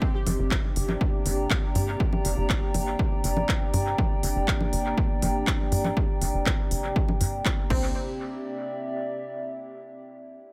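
Melodic techno at 121 BPM with a melancholic, cinematic mood, built on an overdriven, punchy electronic kick up front and a layered techno kit of congas, crash, handclaps and smooth hi-hats with dub echo, while a tight sawtooth sequencer bass drives under a morphing wavetable pad on Gm, a nostalgic lo-fi tape-like pad that carries on alone after 8.0 s, a very quiet string-like drone on C3, and a brief round analog pluck arriving at 7.7 s on the shift to C, all set in an echo-heavy mix with pumping sidechain on the pads and bass.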